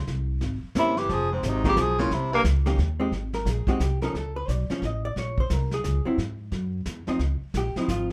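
Small-group swing-and-bop jazz excerpt in a playful, sophisticated 3/4 at 176 BPM, where a woody, thumpy pizzicato upright bass opens with a dark brushed kit before a mellow, subtoned tenor saxophone and a breathy, vibrato-laden baritone saxophone share a brief scooped phrase from 0.8 to 2.4 seconds, while a clean, compressed hollow-body electric guitar carries rich chords as the harmony moves through changes like Fm7 and Dbmaj9 and the music settles into Ab major at 3.1 seconds, all inside a moderate club reverb.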